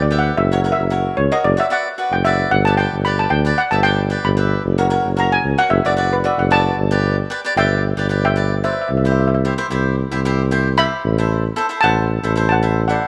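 Sunny and festive, this straight-feel calypso fragment at 112 BPM in G major sets a shimmering, metallic lead steel pan, struck with hard rubber sticks and taking a solo for the first 6.8 seconds, over a close-miked, jazz-style mellow tuba with light vibrato and scooped notes up front and a crisp, picked acoustic cavaquinho accompaniment, all in a rough home demo mix with light studio reverb.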